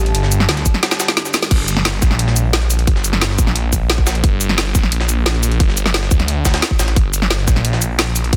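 A straight 4/4 pulse at 176 BPM drives this dark, aggressive technical drum and bass cut in G minor, where a thick, swirling phased detuned saw bass with tube saturation sits up front beside a tight electronic kick that enters at 0.7 seconds and a produced drum kit with a woody snare, bright hats, shaker and crash, while a gritty, pitched-up jungle sampler-style kit with a high-tuned snare and high-pass filtering lurks in the background, a deep, moody ambient pad with chorus and sidechain pumping holds sustained chords until 1.5 seconds, and a drum fill leads into the drop that continues on a dense, heavily limited, nearly dry mix.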